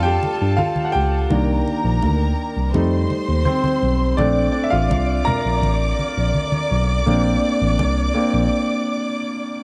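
A clear, intimate baby grand piano leads this lush 1970s-style soul excerpt in Bb major, taking the solo over a smooth, romantic groove at 83 BPM in a straight 4/4. The piano's natural, up-front tone carries audible action noise. Beneath it, a worn, slightly out-of-tune tine electric piano plays the bass line with a direct, clean sound. A rich violin section adds a bowed second line with vibrato, focused and lush with a smooth top. Bright, low-tuned congas with a thin skin enter at 0.2 seconds, struck with hard hands in a small-room sound. The chords move from Gsus2 through Cm9 and F7 to Bbmaj7, and after the electric piano stops at 8.5 seconds a short break lets the grand piano and violins ring on in the dry, close studio sound with light reverb until the cut at 9.6 seconds.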